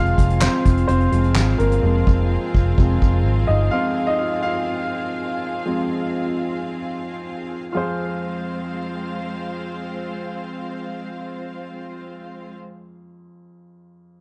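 Piano-driven pop in F minor, this bittersweet, dramatic fragment moves at 108-127 BPM in a straight 4/4. A woody upright piano leads and slows down from 3.7 to 7.7 seconds, over a rich, bowed string section with smooth vibrato, while a round, foam-muted electric bass and a soft-mallet drum kit with a fat snare, boomy kick, hi-hat and handclaps sit up front before dropping out early. The sound is dry and close, in a 1970s studio style.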